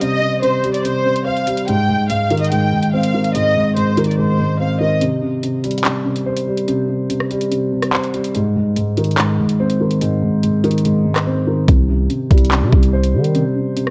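Menacing and cold, this excerpt of half-time drill hip hop in C minor moves at 144 BPM, with a dark, boxy concert grand piano carrying the accompaniment throughout while a lush, bowed violin section sings the melody through tape echo until 5.0 seconds. The drill kit pairs a knocking kick with metallic hats, handclaps and rim clicks, its kick dropping out from 5.0 to 11.7 seconds, and a growling, buzzy 808-style bass enters at 11.7 seconds as the harmony returns to Cm. A recital hall reverb and worn, warbling cassette character with drifting pitch give the sound a hazy, aged grit.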